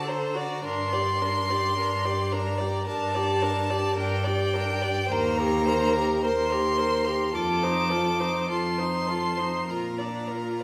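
A string quartet opens together on a D7 chord, settling into G minor in a slow, lyrical and serene romantic movement at 47-55 BPM in 4/4, shaped with a gentle rubato. The first violin carries the melody high in its range with a clear, smooth tone and close, even vibrato, sitting up front in the mix. Beneath it the second violin sings a focused second line, while the viola fills in a rich, bowed accompaniment. The cello anchors the bass with soft attacks, expressive portamento and vibrato, also placed up front. The harmony moves through Cm7/Eb and F7 before arriving on B-flat at 9.7 seconds, all wrapped in the wet reverb of a stone room, in this passage cut from a longer piece.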